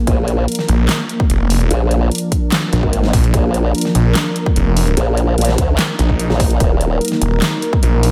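Heavy wobble dubstep at 147 BPM in a half-time 4/4 feel, this aggressive, menacing passage is cut from a longer piece. A lush, thick sawtooth pad holds sustained chords throughout, its chorus and sidechain pumping giving it a warbling, vintage character. Two up-front basses dominate: a formant-sweep wobble bass, bright and saturated with overdrive and chorus, runs from 0.1 to 7.0 seconds, while a snarling, growling saw bass, detuned and distorted with a resonant moving notch, joins at 0.7 seconds and carries on to the end. The drums pair a punchy, layered electronic kick with a big-room kit of handclaps, hi-hat and a huge snare, both set in studio reverb. A brief electronic swell sits in the background from 5.9 to 6.6 seconds, and the harmony then moves from Bb to Ebm at 6.6 seconds, with light reverb over the whole mix.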